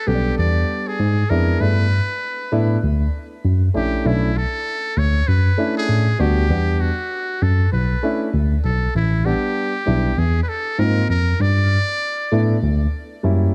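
A muted trumpet, buzzy and thin with a tape echo, carries the jazz-style melody over a dark, mellow concert grand and a worn, slightly out-of-tune electric piano bass that sits up front with light overdrive, in a mellow, nocturnal jazz-hop excerpt with a swung feel and dusky extended chords like Bm11 and Em9, the trumpet stopping at 12.6 seconds while the pianos carry on.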